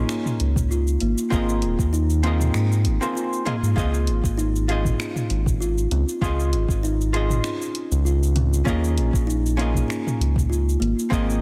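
Sunset chillout with a relaxed, sunny, gently swung feel, where a clean hollow-body archtop guitar comps through lush jazz chords and a woody, ringing kalimba picks out arpeggios, both trailed by digital delay, over a round, deep analog bass sitting up front, a layered deep house kit of cabasa, finger snaps, hi-hat and toms, and a soft overdriven electronic kick entering at 0.6 seconds, all set in light reverb within a dense, heavily limited modern master.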